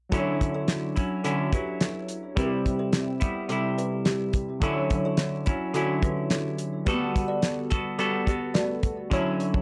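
A damped 70s drum kit sets a straight 4/4 groove at 107 BPM, its fat snare and tight kick sitting dry and up front in this sunny, hazy indie and bedroom pop excerpt in D major. A bright, clean semi-hollow electric guitar carries the accompaniment through subtle chorus and vibrato over a Dmaj9, Cmaj7 and Gmaj9 progression, while warbly, detuned lo-fi synth keys drift in the background through chorus, phaser and a cassette-tape effect. A woody, thumb-plucked kalimba adds a short second line soaked in analog chorus and tape echo until 8.9 seconds, all captured in a gritty hardware recording with light reverb and a faint mains hum.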